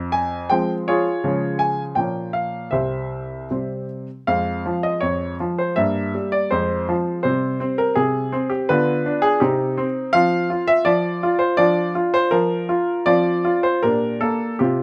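Close, detailed microphones and a light reverb give this short excerpt an intimate, up-front presence. It is a classical-period piano sonatina at 81 BPM in 2/4 with a straight feel, and its mood is cheerful and elegant. A solo baby grand piano carries everything, its tone clear and natural with a short sustain, ranging from C2 up to Ab5. The music opens in F minor, moving through D-flat, B-flat minor and C before a new section begins at 4.3 seconds, where diminished chords and C minor add gentle color. At 10.1 seconds the harmony brightens into F major, moving through open F and B-flat sonorities and ending on a G minor chord over B-flat before the cut at 14.8 seconds.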